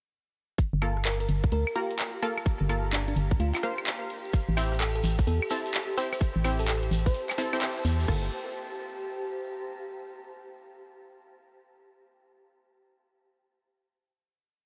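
UK garage two-step with a bouncy, soulful swing, built on a tight, layered electronic kick and a garage kit of metallic skipping hats, rims, claves, claps and crash, with a hollow organ-like FM bass carrying a syncopated line under punchy, detuned sawtooth chord stabs, while a sparkling bell-like FM electric piano adds short phrases in the background, a grainy hand-played shekere joins at 4.3 seconds, and a cloudy, evolving granular pad drifts in at 2.2 seconds and carries on into the final Gm7 chord at 8.1 seconds.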